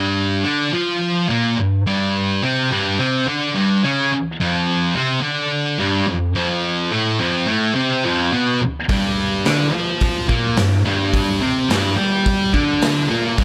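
Garage rock with a rowdy, raw mood, this short excerpt opens on a thick, double-tracked fuzz guitar riff played up front, its distorted, bright tone grinding over G5 and F5 power chords. At 8.9 seconds a raw garage drum kit joins with hi-hat, punchy kick and a medium-tuned snare, sounding gritty and saturated with a rolled-off top inside a pumping stone room. The whole track sits in light reverb and small room ambience in a straight 4/4.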